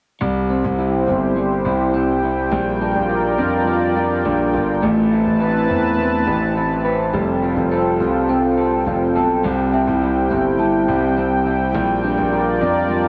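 Dream pop at 104 BPM in C major, ethereal and dreamy, where a smooth, detuned sawtooth analog pad holds sustained chords up front with chorus, a dark, twangy electric guitar at the edge of break-up plays compressed, fingered arpeggios through subtle chorus and digital delay, a concert grand piano carries a deep, open bass line with long sustain, and a delicate, bell-like celesta adds a sweet, bright texture with digital delay in the background from 9.7 to 12.0 seconds, all bathed in a huge ambient reverb over a progression moving from C through Bb6, Amadd9 and Fadd9.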